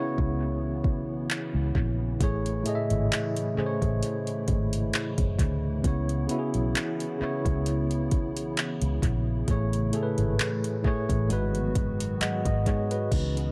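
Contemporary R&B at a slow 66 BPM in C# minor, this short piece cut from a longer track carries a longing, late-night mood with a gentle sixteenth-note swing. A clean tine electric piano sits up front from the start, its tone colored by built-in speakers and trailed by analog delay, and it plays a fill from 11.8 to 13.1 seconds. Behind it, a hollow, flute-like pad holds sustained chords in the background, its soft attack and long release warbling through ensemble chorus and breathing with sidechain pumping. At 0.2 seconds a dark, round, foam-muted fingered electric bass enters alongside a produced R&B kit of soft kick, metallic hi-hats, handclaps and crash cymbal, the drums placed up front with a small-room character and their own analog delay. The harmony moves through C#m7, Amaj7 and G#m7 under light reverb in an echo-heavy mix.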